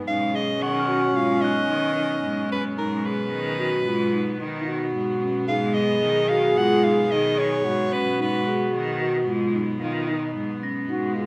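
A breathy, up-front soprano saxophone carries the melody with jazz-style vibrato until about 8.7 seconds in this restless, urgent contemporary chamber piece in 5/4 at 111 BPM, cut from a longer work and centred on G# dorian over a G#m7 chord. Beneath it, a distant French horn with light vibrato plays a second line, a vibraphone struck with soft mallets and its motor off rings out mellow arpeggios, and a clear, smooth bowed cello holds the bass while a bright, earthy chamber string section sustains chords close by. An airy, bell-like glockenspiel adds ringing texture from 0.6 to 3.4 seconds and returns at 10.6 seconds, and the whole ensemble sits in a wet recital hall reverb.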